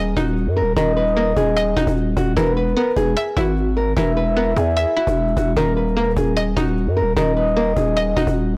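A half-time trap groove at 150 BPM in 4/4 carries this brooding, melancholic hip hop excerpt in Eb phrygian, moving from Ebm to Esus2 at 2.4 seconds and back to Ebm at 5.6 seconds. A growling, buzzy 808-style bass sits up front with a saturated punch that has a fast attack and then decays, while a snappy, close and dry cajon with snares ticks along in the background. A dark, woody nylon-string guitar with old strings carries the fingerpicked melody through a low-pass filter and tape echo. Beneath it, a twangy, string-like resonator pluck with a sawtooth edge, noise layer and filter sweep adds bright, chorused accompaniment. From 0.8 seconds a soft, round octave-layered synth lead joins as a second line, its sustained tone shimmering with chorus, tremolo, vibrato and tape echo. The whole recording sits in a small room with light reverb and comes across blown-out and overdriven.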